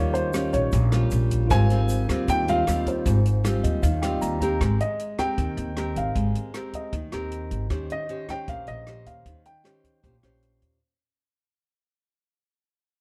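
A dark, warm studio sound with a moderate large-room reverb frames this sophisticated, romantic bossa nova excerpt in Ab major at 155 BPM, where a dark, mellow baby grand piano with audible action noise carries the melody up front over fingerpicked nylon-string guitar, a woody pizzicato upright bass, a dry cocktail drum kit with punchy kick, hi-hat and rim click, and a grainy egg shaker in the background, while a worn, slightly out-of-tune tine electric piano plays a fill before it and the shaker stop at 4.6 seconds, when the piece begins to fade out over rich ninth and thirteenth chords.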